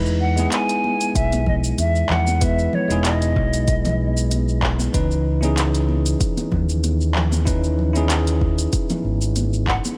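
A gently swung groove of smooth R&B kit with handclaps, smooth hi-hat and shaker, a deep, tape-tinged electronic kick arriving at 1.2 s and bright, hard-hand congas in the background carries this blissful sunset chillout piece, where a punchy, overdriven fingered bass and a clean, bell-like tine electric piano with delay sit up front over Emaj7 and C#m9, while a hollow, pure concert flute with vibrato and delay sings the melody from 0.2 to 4.3 s, bathed in light digital reverb.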